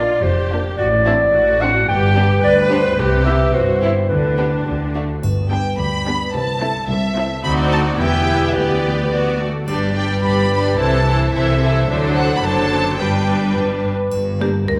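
A straight 2/4 pulse carries this playful, whimsical cinematic cue, cut from a longer piece, where a dark, woody violin section sings the melody over a distant, smooth second violin line and a bright, focused viola section, all bowed with vibrato. An up-front, soft-attacked clarinet adds its own classical-style line until 4.6 s, while a ringing concert harp spins arpeggios in the background over a lush cello section and an even, rich double bass section. From 5.2 s a faint triangle glints now and then in the background, and at 14.4 s a dry, close-miked marimba with hard mallets pops in on the melody, with the whole ensemble bathed in a wet scoring-stage reverb.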